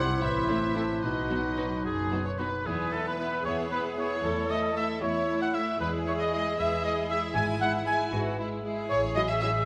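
A soft, bell-like glockenspiel struck with rubber mallets opens this whimsical, mischievous film cue over a full orchestral texture, in 6/8 at 76 BPM with uneven beats, in E major and tuned to A4 = 444 Hz. Two violin sections carry the melody and a second line in the background, one with light vibrato and a smooth top, the other lush and distant, while a solo oboe with a gentle attack sings the most prominent line throughout. In the opening moments a punchy solo clarinet, a very quiet French horn section holding mellow sustained chords, and an airy flute section with rolled-off highs, entering at 0.2 s, add color before dropping out of the texture by 2.5 s. Underneath, a viola section with expressive portamento supplies accompaniment, a ringing concert harp plays fingerpicked arpeggios, and a cello section pairs with a focused double bass section on the bowed bass line. The harmony moves from A minor and B to E at 2.7 s, where a new section begins, then through A5/E, E/G# and F#m7/A, framed by moderate scoring stage reverb in this fragment of a longer piece.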